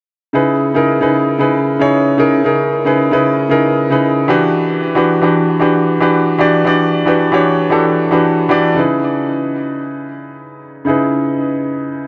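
Deep and soulful, this short amapiano excerpt at 114 BPM in C# dorian, with a light 16th-note swing, features a clear, up-front grand piano playing solo from 0.3 to 12.1 seconds, ranging from C#3 to D5 through a digital delay, moving over C#m7 and Em7 chords before returning to C#m7 at 8.8 seconds, all set in a lush hall reverb within a dark, warm production.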